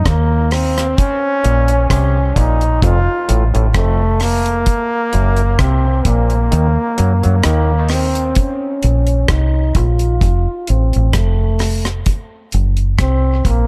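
A clear, lightly vibratoed trombone carries the solo melody up front, its sound darkened by a low-pass filter and trailed by dub echo, with a filter sweep on it from 8.4 seconds as the second section begins. This is a hypnotic, heavy dub reggae excerpt at 65 BPM in Bb harmonic minor, built on a round, punchy, foam-muted fingered electric bass and a dry acoustic drum kit of tight kick, hi-hat and rim click, with the kick dropping out between 6.5 and 8.4 seconds. A mellow, stringy clav riff sits in the background with its own dub echo from 1.4 to 7.7 seconds, all set in an echo-heavy mix with light reverb and studio ambience over a Bbm, F, Gb, Ebm progression.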